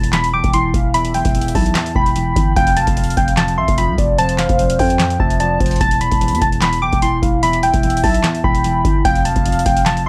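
A half-time trap beat at 148 BPM in 4/4 drives this menacing, eerie hip hop excerpt in E phrygian, cut from a longer piece and moving between Em and F. A booming analog drum machine sits up front with a deep kick, tonal snare, metallic hi-hats and handclaps, while a growling, buzzy 808-style bass rumbles underneath from E1 to F2. Soft, round electric-piano-like synth keys carry the melody high between F5 and D6, colored by chorus and phaser, and a velvety synth lead with vibrato traces a second line beneath it, treated with chorus and analog delay. Low in the register, a dark, boxy concert grand piano plays the accompaniment from E2 to F3. All five parts play throughout the 10.1 seconds, and the dry, gritty hardware sound has little reverb, keeping the mix close and ominous.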